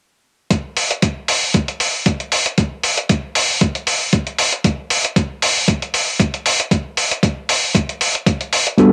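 A gritty, thumpy electronic kick and a compressed, sampler-style electronic hi-hat, both tape-warm, up front and re-recorded in a large room, drive this sunny, groovy nu-disco fragment with a lightly swung feel from 0.5 seconds, until a clean tine electric piano played through its built-in speakers appears at 8.8 seconds, in a dry home cassette recording cut from a longer piece.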